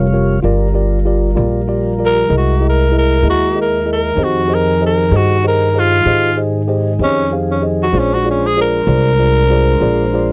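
A worn, slightly out-of-tune tine electric piano, a soft, flute-like tonewheel organ turning through a slow rotary speaker, and a woody pizzicato upright bass open this slow 12/8 blues at 64 BPM, moving through Gm7, C7alt, Fm7 and Bb9 with a soulful, gritty mood. At 2.1 seconds a raspy, growling tenor saxophone takes the jazz-style solo melody up front, its breathy tone sitting beside the dark, close bass. The sound is dry and intimate, like a close 1970s-style studio recording, and the clip is cut from a longer piece.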